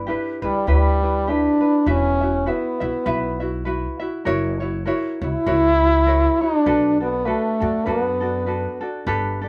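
A French horn with a straight mute carries the melody up front, its nasal, muted tone touched with light vibrato, soft attacks and a smooth top as it sings in a classical style from 0.5 s to 8.8 s. Beneath it, a tenor ukulele, thumb-plucked and light, supplies gentle accompaniment, while a pizzicato upright bass on steel strings adds a woody, growly low end, both sitting close and present throughout. This relaxed, dreamy Hawaiian piece moves in an easy swung four, drifting through G6, Esus2, F#7 and Bm7 in a minor key. The trio sounds like a band playing live together in one room, wrapped in moderate studio reverb. The recording is a short portion cut from a longer piece.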